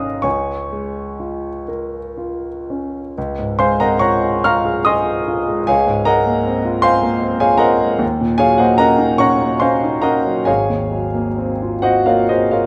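Luminous and hazy, this impressionist classical solo piano passage, cut from a longer piece, unfolds in Db major at a rubato 6/8, with the dotted-quarter pulse drifting between 38 and 53 BPM. The grand piano plays alone from Ab1 up to F6, its tone clear, polished and intimate, with long sustain and audible action noise that keeps it present and up front. A high Db6 rings out at 0.2 s before the music opens into a new section at 3.2 s on a Dbmaj9 chord. The harmony then moves to Ebm7 at 8.0 s and arrives on an Ab13 at 10.5 s. A moderate recital hall reverb of 1.5 seconds surrounds the instrument, and the dark, warm production gives the sound a dreamy glow, with the piano tuned to A4 = 438 Hz.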